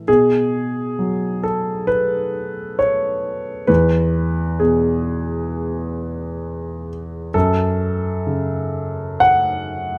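A solo concert grand piano opens this wistful, intimate piece of neoclassical minimalism, its dark, mellow tone sitting up front in the sound. The playing is rubato, flowing freely over a slow pulse in four. The harmony moves from B5 at 0.1 seconds to E at 3.7 seconds and then to F#m at 7.3 seconds, all within a single section cut from a longer work. The piano spans from deep bass notes up to F#5, and the noise of its action can be heard. A light reverb surrounds the instrument, giving this smooth, vintage-sounding fragment a close, private atmosphere.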